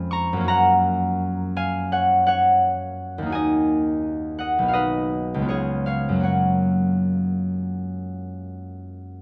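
Dreamy and graceful, this short passage cut from a longer classical piece for solo concert harp moves in a flexible, rubato 4/4 at roughly 74-85 BPM in F# major. The harp plays alone from start to finish across 9.2 seconds, ranging from B1 up to C#6, its fingerpicked strings ringing with a warm, acoustic tone. Placed up front by close, detailed microphones, it sits within a moderate recital hall reverb that lends a gentle bloom to each note. The harmony travels from F# through D# minor and B to a C#7 at 5.5 seconds before settling home on F# at 6.2 seconds.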